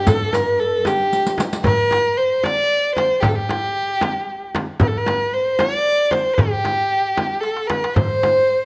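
Arabic maqam ensemble in C maqam rast, a warm, stately excerpt in a straight 6/8 at 76 BPM, led up front by a single dark violin singing an expressive, bowed melody with vibrato and portamento between G4 and D5, while a breathy clay ocarina adds a soft second line in the background at the start and again from 8.0 seconds. A veiled, muted cello section holds a distant G2 drone until 1.7 seconds, and the riq's bright jingles join the opening only until 1.6 seconds, while a crisp metal-shell darbuka and a frame drum played with hard hands carry the rhythm throughout, with drum fills marking the section change near 1.7 seconds and again at 7.4 seconds. Close, detailed microphones capture the players in a moderate recital hall reverb, with a faint mains hum underneath.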